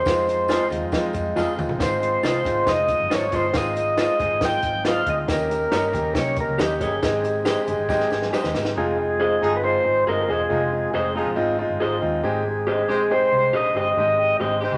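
Warm and joyful, this uptempo 1960s-style soul cut, a slice of a longer piece, moves at 138 BPM in a straight 4/4 in Ab major. A clean tonewheel organ carries the melody up front through a slow rotary speaker, backed by a round, foam-muted fingered electric bass and a clear concert grand piano with deep bass and long sustain. A compact cocktail kit with a high-tuned snare and tight kick drives the first 8.8 seconds alongside bright, very quiet congas and a jingly tambourine in the background, with drum fills at 1.4 and 7.9 seconds. An electric guitar through a small old amp adds twangy, slightly broken-up stabs throughout, while a smooth-topped horn section in octave doubling enters at 8.8 seconds as the drums and percussion drop away. The chords move through Fm7, Ab6, Eb7 and Abmaj7, all bathed in a wet large studio reverb.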